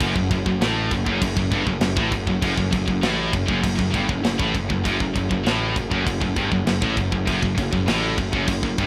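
A dry, rough home-demo mix opens this heavy, dark 8.9-second heavy metal passage at 99 BPM in F# phrygian, set over a single F#m chord. Up front, a tight acoustic drum kit with a tight kick, medium-tuned snare, crash cymbal and a rolled-off top drives alongside a growly, fuzz-soaked picked bass. Three bright, scooped high-gain guitars, one double-tracked, pick a low distorted riff further back, while a very quiet chamber organ holds soft flute-stop chords with chiff and tremulant beneath them.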